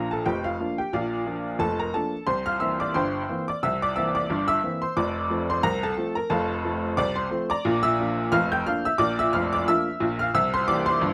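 A close, intimate recording with a touch of light reverb puts a worn, slightly detuned upright piano up front, its woody tone and audible action noise coming through clearly. This lively, playful ragtime passage in 2/4 carries a gentle sixteenth-note swing as the solo piano ranges from deep bass to glittering treble, with notes ringing on in long sustain. The short section moves through Bb, C7 and F before returning to Bb and C7 by 10.3 seconds, ending at 11.1 seconds as though cut from a longer piece.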